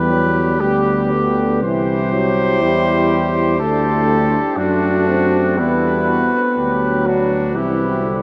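Stately and noble, this short excerpt from a longer classical work for brass quintet unfolds with an unhurried, rubato feel. The cornet and trumpet, both warm in tone, play from the very start, the cornet carrying the melody up front with a soft attack while the trumpet shapes a second line beneath it. The French horn and tuba share a mellow quality, the horn sitting distant in the background as accompaniment and the tuba holding the bass up front with a light vibrato. A clear trombone adds further accompaniment from the background. A huge, wet reverb places the players in a vast, echoing space, and all five parts sound together throughout the 8.2 seconds.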